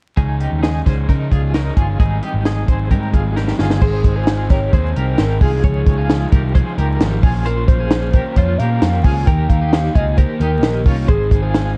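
Opening at 0.2 s with a bright, twangy twelve-string electric guitar picking arpeggios through tremolo and tape echo over an overdriven garage guitar, a round, amped picked bass and a punchy, dry cocktail drum kit roughened by 12-bit sampler grit, this nostalgic, youthful jangly indie pop fragment in Ab major at 132 BPM rolls into a drum fill at 3.4 s before a warbling, mellow lead of wave-folded square, sawtooth and sine tones with chorus, vibrato and tape echo enters at 3.8 s, the mix sitting in a dark, lightly reverberant production dusted with vinyl crackle.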